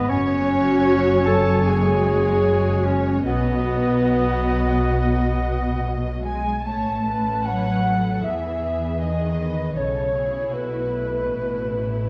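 A dark, reverberant scoring-stage sound carries this uplifting, moving film-score passage, cut from a longer piece, where a muted, veiled violin section sings the rubato melody over con sordino violas, cellos and a close, up-front double bass section, while a second violin line sits in the background, an airy, hollow flute and a distant clarinet add second lines of their own, a bright oboe adds a present voice until 6.3 seconds, and a smooth-topped French horn section holds sustained chords until 5.8 seconds before the harmony shifts at 6.7 seconds.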